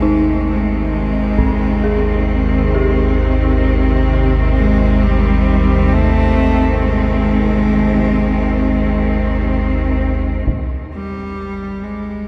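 At a slow, straight 66 BPM in 4/4, this dark ambient drone excerpt in Ab major unfolds with an ominous, dark mood. A deep, rumbling drone sits up front, built from triangle and sawtooth tones with a slow attack and long release, colored by phaser and subtle chorus. Over it, a symphonic cello section fades in with bright, intense bowed chords and light vibrato, while a solo cello carries a biting, nasal, earthy melody through shimmer reverb and diffuse ambient delay. In the background, an eerie, inharmonic FM synth bell plays decaying arpeggios with chorus and tremolo, and a taiko ensemble struck with hard sticks lands low-pass filtered hits at 1.4 seconds and again at 10.5 seconds. At 10.5 seconds the harmony moves from Ab to Abmaj7(no3), and the bell and cello section stop there. The drone and solo cello, joined briefly by that last taiko hit, carry on until 12.3 seconds. The whole mix is dreamy and soaked in a huge ambient reverb.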